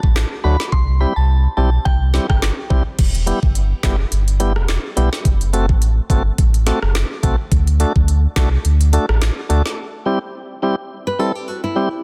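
A deep, full sub bass with an octave layer sits up front in this hypnotic, tough dancehall excerpt at 106 BPM with a swung 16th feel, riding an electronic afro-pop kit of knocking kick, woody snare, crisp hats, handclaps, rim clicks and crash, with a tape-warm, large-room character. A lightly overdriven tonewheel organ with vibrato and sidechain pumping carries the accompaniment over chords moving from D and C through Em and F#dim, while a glassy, crystalline FM bell with chorus, tremolo and delay warbles briefly near the start. The bass drops out at 9.6 seconds and the drums follow at 9.8 seconds for a break, leaving the organ until a fingerpicked classical nylon-string guitar with delay and audible finger squeak enters at 11.1 seconds.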